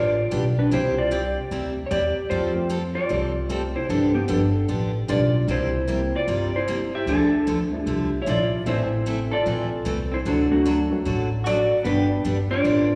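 A clean, up-front lap steel carries the slide melody over bright, full-bodied picked acoustic guitar and a thumpy, woody upright bass from the start of this swinging, down-home western swing excerpt at 151 BPM, with a mellow, slightly detuned upright piano entering in the background at 0.7 seconds and a dark hollow-body jazz guitar adding a second line from 8.2 seconds, the lap steel, acoustic guitar, piano and jazz guitar all carrying slapback echo in the small-room ambience of a live gig heard through the venue's PA as the chords travel from G through C7 and Am back home to G.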